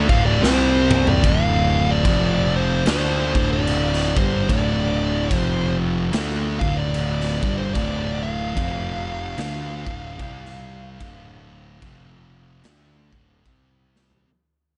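Sludgy and hypnotic, this slow stoner and doom metal excerpt in D minor crawls along at 74 BPM in 4/4, with a 60% swing on the eighth notes. Two dark, distorted fuzz guitars grind out the riff in the background, and a third, brighter double-tracked fuzz guitar adds a very quiet layer that drops out at 1.2 s, as the long fade-out begins. Up front, a warm, overdriven picked electric bass with tube saturation anchors the low end, while a compressed fuzz lead guitar carries the melody high above, trailed by tape echo. A raw garage drum kit, saturated and gritty in a bright stone room that pumps, hits with a punchy kick, a medium-tuned snare, crashes and toms, rolling through fills at 0.4 s and again at 13.9 s. The harmony circles among D minor, C and F power chords, and the dry, dull-topped mix has little reverb.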